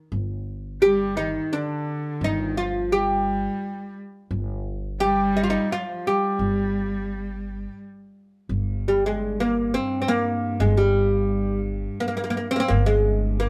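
Arabic maqam ensemble music in G maqam kurd, longing and hypnotic, moving at 86 BPM in a straight 3/4 with tuning at A4 = 444 Hz, played live by a band in one room with light reverb. Up front, a dark, growly pizzicato upright bass with steel strings holds a low G, while a woody, fretless oud with plectrum-plucked double strings carries the melody from 0.8 seconds alongside a single bowed cello played sul tasto with light vibrato and a soft attack as an intimate second line until 7.8 seconds. At 8.5 seconds a rich, earthy chamber cello section enters, sitting low in the mix with a biting bowed drone on G.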